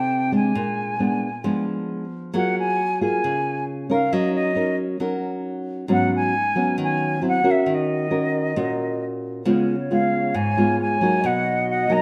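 Wistful and melancholic, this fragment of a longer bossa nova piece moves at 135 BPM in Eb minor, with an airy, tongued silver concert flute singing the melody with vibrato while a thumb-plucked classical nylon-string guitar carries the accompaniment up front. At 9.4 s a pure, hollow flute section slips in behind them as a soft second line, distant and mellow, as the harmony shifts from Ebm7 to Db7 and then Bmaj7. A moderate echo chamber reverb gives the whole performance a gentle sense of space.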